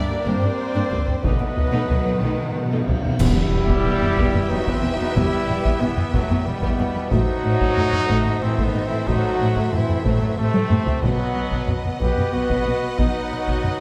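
Epic orchestral film score in a relentless 3/4 at 92 BPM, cut from a longer piece, settling into E harmonic minor at 3.2 s, where dark clash cymbals, concert bass drum and a huge, barely audible impact strike together. A rich, lush violin section carries the melody over a dark, very quiet second violin line, joined by a mellow, hollow flute on that second line until 2.8 s, while present French horns, bright trombones in the background and a smooth-topped string section hold sustained chords and a dark solo trumpet adds stabs. Soft violas, expressive cellos and woody double basses supply accompaniment and bass beneath heavy-stick taiko drums in a live room and background timpani, which return at 11.0 s, the ensemble framed by a moderate scoring stage reverb.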